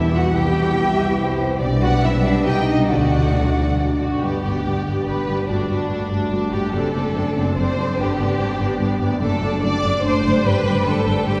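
Heard from further back in a cathedral-like space with a long, wet reverb, this short cut from a longer classical work is a fast, dramatic romantic movement for symphony orchestra in 3/4, played with rubato and an urgent mood. Two violin sections carry the upper lines: the melody sits in the background while a lush, vibrato-rich second line rings out more plainly alongside it. Beneath them, a dark, focused viola section supplies accompaniment, and a woody, distant cello section joins a rich, even double bass section on the bass. A concert harp rings through fingerpicked arpeggios in the background, while a mellow, close-miked French horn section holds very quiet sustained chords until 4.0 seconds. Timpani struck with hard mallets are barely audible between 2.9 and 3.5 seconds, as the harmony turns from Cm to D before the second section settles onto G at 4.2 seconds.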